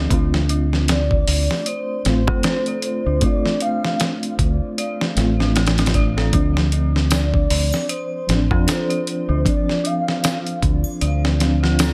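Brooding and melancholic, this swung trip hop excerpt rests on a single Dm7 chord. A gritty, compressed sampler-style drum kit with a thumpy kick sits up front beside a round, deep dub fingered electric bass, while a reedy electric piano with tremolo and tape echo and an eerie, inharmonic synth bell playing arpeggios through chorus, tremolo and tape echo fill out the backing. A soft-attack, breathy sine lead carries the melody from 0.9 s, colored by phaser, ensemble chorus, vibrato and dub echo, and close, dry tambourine and triangle join in the background at 7.1 s, all within a light digital ambience.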